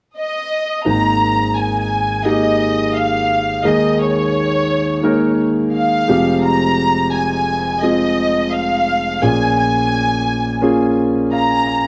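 A dark, woody violin section carries the melody from 0.2 seconds, its bowed tone soft in attack and shaded with vibrato in this uplifting pop passage cut from a longer piece. A concert grand piano enters at 0.8 seconds with open, long-sustaining accompaniment and deep bass, moving through suspended and minor-seventh chords before a piano fill at 11.0 seconds. Light reverb sits over a dry, close recording with a 1970s studio character, giving the whole a warm, uplifting glow.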